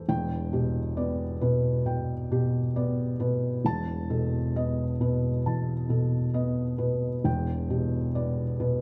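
A dark, hushed sound opens this short fragment of a longer piece, with a felt-muted upright piano sitting up front in a moderate scoring-stage reverb that lets each note linger for about 1.8 seconds. It is neoclassical minimalist piano music in E minor, melancholic and reflective, moving at a slow 67 BPM in 4/4 with a freely breathing rubato feel. The upright plays alone from 0.0 to 8.8 seconds, its thick felt giving the tone a soft, mellow intimacy that spans from E1 in the deep bass up to A5. The harmony rests on Em7, shifts to B7 over an E bass at 3.7 seconds, and settles back on Em7 at 7.3 seconds. The overall production stays warm and natural, keeping the mood close and inward.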